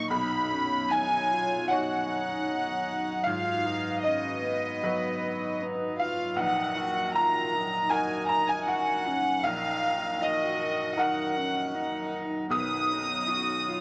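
Reflective and melancholic, this neoclassical piano-and-strings excerpt moves at 78 BPM in 4/4 with a rubato feel, drifting through Badd9, G#m7 and D#m/A# chords before returning to Badd9 at 12.5 seconds. An up-front chamber violin section carries the melody with a rich, floating, sul tasto tone, while a bright, woody, slightly detuned upright piano provides accompaniment and a distant solo cello, soft-attacked and pure, adds a second line touched by slapback echo. Beneath them a dark analog pad of sawtooth and triangle waves with a sub octave holds slow-attack sustained chords through chorus and phaser, all set in a light studio reverb.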